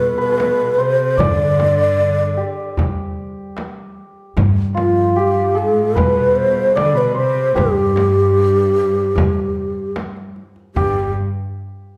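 Warm and passionate, this Persian modal ensemble excerpt in G dastgah homayun moves at 75 BPM in a straight 4/4, led by a breathy, hollow low ney with vibrato sitting up front, over a dark, intimate bowed cello section, a shimmering hammered santur, a woody pizzicato upright bass, and a deep frame drum and tight background tombak that enter at 0.4 seconds, all played live together in a large studio room with moderate reverb.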